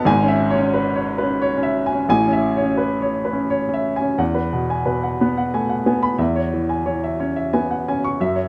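A warm upright piano carries this short neoclassical minimalist excerpt alone, its woody, smooth and vintage tone sitting up front with a short sustain. The mood is peaceful and intimate, moving in a rubato 3/4 at around 85-95 BPM in E major. The piano spans from G#1 up to C#6, drifting through E6/G#, Amaj7, Eadd9 and C#m/E chords. A second section begins at 4.2 seconds, and the piece runs to 8.5 seconds, cut from a longer work. Close, detailed microphones and a light reverb keep the sound clear and personal.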